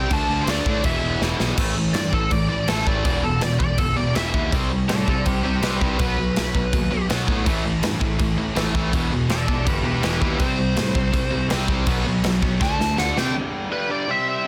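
A biting, overdriven lead guitar sits up front in this angry, urgent punk rock fragment, carrying the melody and taking a solo from 1.6 to 13.3 seconds, with a brief gap before it returns at 9.3 seconds. Beneath it, a big acoustic rock drum kit with a punchy kick, medium-tuned snare and bright crash cymbals drives a straight 4/4 pulse, marking the changes with fills at 1.2 and 12.6 seconds. A fuzzed, overdriven electric bass, picked and warm, anchors the low end. Three electric guitars grind out the riff in the background: an overdriven, compressed part that runs to the very end, a tight, distorted part, and a very quiet, double-tracked fuzz guitar that drops out after the opening and returns at 7.4 seconds. The chords move through power-chord shapes such as D5, A5 and B5 with a single E minor, and the sound is dry, with little reverb and a dense, heavily limited modern master.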